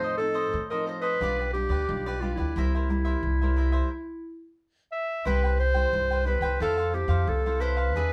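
A clear, classical-style clarinet carries the solo melody up front in this joyful, festive samba, a short cut from a longer piece, with a woody, thumpy pizzicato upright bass sitting just as forward beneath it. A bright, crisp picked cavaquinho and a warm, fingerpicked nylon-string guitar fill out the accompaniment, and the band breaks into a stop from 3.9 to 5.3 seconds before moving into a new section built on major-seventh chords. The players sound live together in one room, with a moderate studio reverb.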